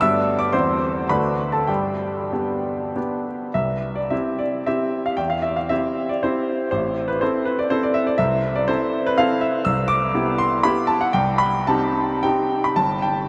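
A clear, intimate baby grand piano plays alone from start to finish in this graceful, rustic romantic classical dance, its dotted rhythms set in 3/4 with a rubato feel that drifts between 90 and 129 BPM. Opening in G major, the piece moves to C major at 3.6 seconds, passing through Am and a Cmaj7 before darkening onto Cm near the close of the excerpt. The instrument sits up front with audible action noise, yet it is bathed in a huge, echoing reverb that suggests a vast space.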